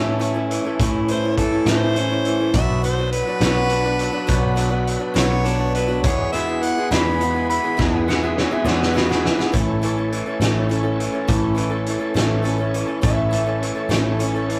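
A rough rehearsal-room recording with moderate small-room reverb frames this jangly folk and heartland rock excerpt in 6/8 at 69 BPM in A major, where punchy, fat-snared drums from 0.2 s and a round, foam-muted picked bass sit up front beneath a woody, boxy swing-picked acoustic guitar, a lo-fi, slightly broken-up electric guitar riff and a shouting, key-clicking tonewheel organ with chorus vibrato and fast rotary speaker in the background, while a smooth, warm harmonica carries the melody from 1.1 s before a background slide guitar adds a second line from 8.1 s over a drum fill, as the chords move from A through Bm and E back to A.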